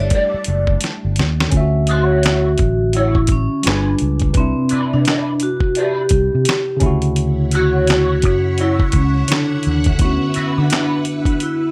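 Soulful and relaxed, this neo-soul R&B fragment sets a ringing, metallic vibraphone melody with slapback echo and slow motor vibrato over a worn, slightly out-of-tune tine electric piano, a round, amped fingered bass and a gritty, compressed sampler-style drum kit with thumpy kick, fat snare, hi-hat and handclaps that plays a fill at 0.8 seconds, while a dark, slightly broken-up picked guitar adds a second line through wah and chorus, and a swirling, vintage string machine with phaser and plate reverb holds sustained chords, dropping out at 1.5 seconds and returning at 7.2 seconds.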